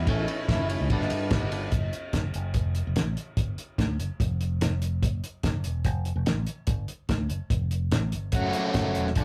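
A straight 4/4 pulse at 145 BPM drives this upbeat, jangly indie rock excerpt, where a biting, bright, double-tracked overdriven guitar riff sits up front from 0.0 to 1.7 seconds and returns at 8.3 seconds, a warm fingered electric bass runs throughout, and a cloth-damped, thuddy kit with dark cymbals, fat snare and tight kick plays from 0.1 seconds, all caught in a rough rehearsal-room recording with moderate small-room reverb over chords moving from A and G through F, G5, Esus2 and Fadd9 to F#m7.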